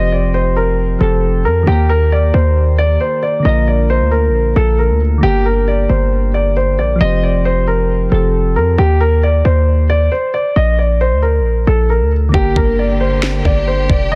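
A dark, mellow grand piano carries the melody throughout this menacing half-time trap excerpt in G minor at 135 BPM, over a punchy, heavy 808 bass and soft, round synth keys with chorus that drop out at 8.8 s and return at 12.3 s, when a lush bowed string section and a trap kit with a knocking kick and sharp snare enter, all set dry in a dense, heavily limited mix.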